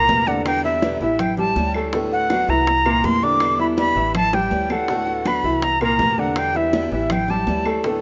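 An airy, expressive jazz flute opens this relaxed, danceable Cuban son and guajira passage, sitting up front with vibrato and a soft attack over a bright, picked parlour steel-string acoustic guitar. A clear, slightly worn grand piano spins long-sustaining arpeggios beneath it, while a thumpy, woody pizzicato upright bass anchors the low end. Round bongos played with hard hands and high-tuned congas with a thick skin join at 0.1 seconds, tucked into the background, and distant woody claves arrive at 0.5 seconds. The harmony cycles through Em7, A7, D6 and C7, and a drum fill at 4.3 seconds briefly lifts the groove. A lush hall reverb surrounds the ensemble, but the rough home-demo mix leaves the top end dull and muffled in this short cut from a longer piece.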